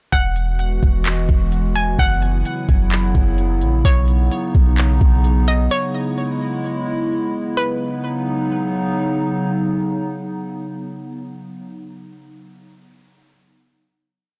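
A sparse half-time beat at 129 BPM in 4/4 opens this short, dreamy cloud-rap piece in B major, built from a soft kick, smooth hi-hats and handclaps on an electronic R&B-style kit. A deep, boomy 808-style bass sits up front with long sub-bass notes that follow the kick and slide in pitch, lightly tube-saturated. Both drums and bass drop out after about 5.7 seconds, leaving a warbling, nostalgic pad of detuned square and triangle tones that breathes with sidechain pumping, chorus and its own reverb through chords moving from Eadd9 to F#7sus4, Badd9 and C#m7. Above it, a hollow, bouncy square-wave pluck repeats a sparse, looping melody like a sample, with chorus and tape echo, until it stops at 8.9 seconds. The pad alone then holds a final Badd9 until 12.1 seconds. The mix is dry, blown-out and overdriven, with its top end cut off, giving the blissful mood a lo-fi haze.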